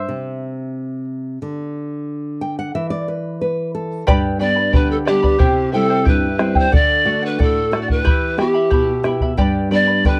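Wistful yet festive, this Andean folk passage in 2/4 opens with the shimmering double strings of a fingerpicked charango over a bright, up-front classical nylon-string guitar that adds a fill from 2.1 seconds, then at 4.1 seconds a round, close and dry bombo joins as the chords move through G, C, D and Em, and from 4.4 seconds a breathy, woody pan flute with soft attack and vibrato carries the melody, all set in a dark production with a small-room reverb.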